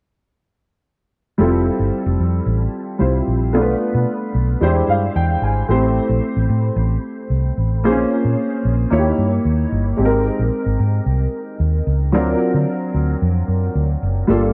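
A grand piano and a muted, fingered vintage electric bass enter together at 1.4 seconds in this upbeat, urban pop fragment. The piano has a natural, up-front tone with a touch of ensemble chorus, while the dark, round, amped bass sits close and forward beneath it. The piano adds a brief fill at 4.6 seconds as jazzy chords such as Fmaj9, E7alt and Abmaj9 move through a dry, close 1970s-style studio sound with light reverb.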